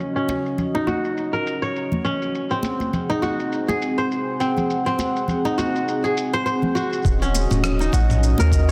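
Mystical and hypnotic, this short cut of organic downtempo moves with a loose, swung sixteenth-note feel. A bright, fingerpicked kora rings crisp and up front with arpeggios softened by a low-pass filter and trailed by delay, over a smooth, detuned sawtooth pad whose slow-attack chords carry chorus, sidechain pumping and a filter sweep. A dusty, sampler-style soul kit sits low in the mix with gritty, tape-warm rim clicks, shaker and toms that sound re-recorded in a large room and muffled by low-pass filtering, while congas join at 0.3 s with hard hands, close and dry. At 7.0 s a deep, round sine sub bass arrives with a fast attack and its own sidechain pumping, alongside a thumpy, compressed electronic kick. A wet concert-hall reverb and a dense, heavily limited modern master wrap the mix in digital ambience.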